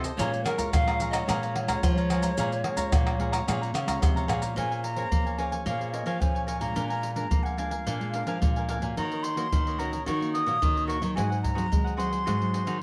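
A straight 4/4 groove at 109 BPM from up-front maracas, tight surdo, pandeiro and tamborim drives this lively, bittersweet samba-choro excerpt in Bb minor, where a crisp picked cavaquinho, a bright fingerpicked nylon-string guitar with finger squeak and a dark, full-bodied nylon-string bass guitar support an airy bamboo pan flute with chiff and vibrato from 0.2 to 4.0 seconds, before a wooden flute with a crisp attack takes the melody at 4.6 seconds over Bbm9, Bb7, Ebm7 and Ab7 chords, all touched by light reverb.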